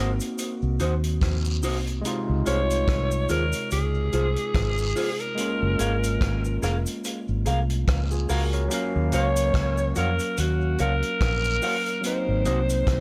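A growling, breathy alto saxophone carries the melody up front from the start, joined by a barky, overdriven tine electric piano and a bright, twangy guitar playing stabs, all three wrapped in tape echo, with the guitar also soaked in lush chorus. Underneath, a dark, round, foam-muted fingered bass sits prominently, and from 0.2 seconds a vintage kit with a punchy kick and rolled-off top plays hi-hat and rim clicks under gated reverb, while cabasa and guiro tick softly in the background. This tender, sweet lovers rock passage swings gently over a soft chord cycle in light reverb, cut from a longer piece.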